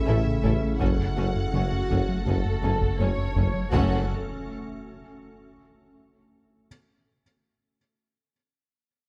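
A vast, tense hybrid orchestral and electronic film cue at 82 BPM in F# phrygian opens on an A chord with a lush, distant violin melody over dark French horn chords, a bright, chorused organ-like pad, a deep sub bass and a muted felt upright piano with digital delay; a woody second violin line, focused violas, smooth cellos, bowed double basses, a tuba and a round sawtooth analog bass riff join almost at once, heavy-stick taiko drums enter at 0.4 seconds, the harmony settles on F#m, and a huge impact lands in the background at 3.7 seconds.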